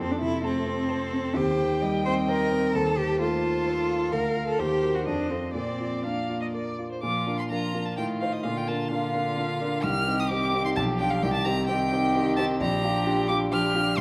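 Cheerful and lively, this quick classical-period movement for piano quartet moves at 130 BPM in 3/4 with a rubato feel, set in Bb major and cut from a longer piece. A single bowed violin carries the melody from A4 up to F6, its tone smooth and even with vibrato, while a second violin of rich, smooth-topped character joins at 0.4 seconds on a supporting line between F4 and A5. The cello plays its own second line from D3 to C5, sounding close and rich with vibrato, and the grand piano supplies accompaniment from Bb1 to C5, present, polished and up front in the blend. The harmony opens on F and settles onto Bb by 5.5 seconds, then the second section from 7.0 seconds turns toward C minor with G7/B before ending on Gm7/Bb. A moderate recital hall reverb of 1.4 seconds gives the ensemble a gentle sense of space.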